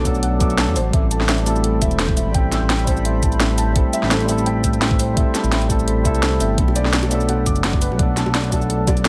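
An up-front, overdriven drum and bass kit with a cracking snare and bright hats drives this melancholic, soulful liquid drum and bass excerpt at 170 BPM, joined by a knocking electronic kick, a dark gliding synth bass, clean tine electric piano with tape echo, felt-muted upright piano arpeggios with audible action noise and digital delay, and a shimmering, ethereal pad pumping in the background over Bm7 and Am7, while very quiet, high-tuned bongos slip in at 6.7 seconds.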